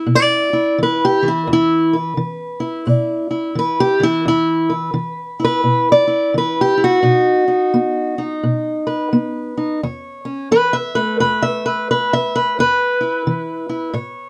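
Closely miked and detailed with a light reverb, this swaggering, rollicking acoustic country blues excerpt at 87 BPM in a swung 4/4 features a lone fingerpicked steel-string parlour guitar, boxy and up front with fresh strings and tuned to A4 = 437 Hz, ranging from E2 to E5 as it moves from E5 to B at 7.1 seconds and A at 9.8 seconds before the harmony drops out at 12.6 seconds.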